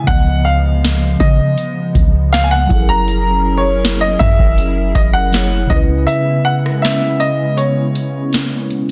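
Late-night and full of longing, this short cut from a longer contemporary R&B piece moves at 80 BPM in a straight 4/4, sitting in C# dorian with chords shifting from C#9 to F#9 and settling on C#m7 near 5.7 seconds. A mellow tine electric piano carries the accompaniment, its tone heard as if through built-in speakers. Beneath it a hollow, flute-like pad holds sustained chords, its detuned, warbling vintage character thickened by ensemble chorus. Up front, a bright grand piano with a brilliant yet worn edge sings the melody high in its range, trailed by digital delay. A clean, sine-like 808-style bass with a fast attack and dark decay booms until 6.1 seconds, while a booming analog drum machine, re-recorded in a large room, drives the groove with a deep kick, crisp snare, rim click and metallic hi-hats. The kick drops out from 6.1 seconds, and the whole sits in light reverb under a dense, heavily limited modern master.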